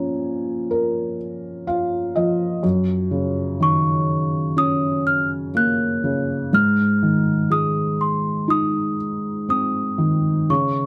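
A bell-like, delicate celesta melody and a mellow felt-muted upright piano with audible action noise open this gentle, innocent children's lullaby at a rubato 62 BPM, the piano adding a fill at 1.2 seconds as the harmony moves from B-flat minor through G-flat six to A-flat, framed by a dark production and moderate studio reverb.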